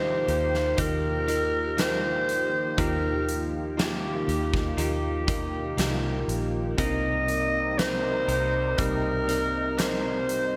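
A slow, straight 4/4 pulse at 60 BPM anchors this emotional, heartfelt pop ballad in Eb major, tuned slightly flat to A4 = 436 Hz, with a huge arena drum kit entering at 0.3 s: a punchy kick, fat snare and hi-hat ring out through gated reverb in a big, natural room. A vintage muted fingered electric bass sits low with a dark, round, foam-muted tone, while a bell-like tine electric piano plays clean, direct accompaniment. Up front, a growling clarinet carries the solo melody in a jazz style, raspy and gritty with subtone, light vibrato and scooped notes, yet placed at a distance with a roomy sound. Behind it, a twelve-string electric guitar adds twangy, compressed picked arpeggios, and a sweeping resonant pad of detuned sawtooth and sine layers sustains evolving chords with a slow attack, filter swell and chorus. The harmony rests on Ebadd9 before moving to Cm7 at 6.8 s, all wrapped in a lush hall reverb and bright 1980s-style digital production in this short passage cut from a longer piece.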